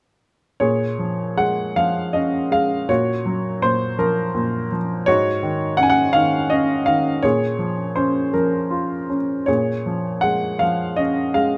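A warm baby grand piano carries this brief, lyrical classical passage alone, sounding present and up front from 0.6 seconds until it ends at 11.6 seconds. The mood is wistful and melancholic, with a compound 6/8 metre and a rubato feel that lets the phrasing breathe freely. Its harmony drifts from Bbm7 through Gbmaj7#11/Bb and Ab7sus4 before settling back on Bbm7, giving the passage a suspended, searching quality. The piano spans from its low register up into its upper middle range. Close, detailed microphones capture the instrument intimately, with only light reverb around it, and the clip is cut from a longer piece.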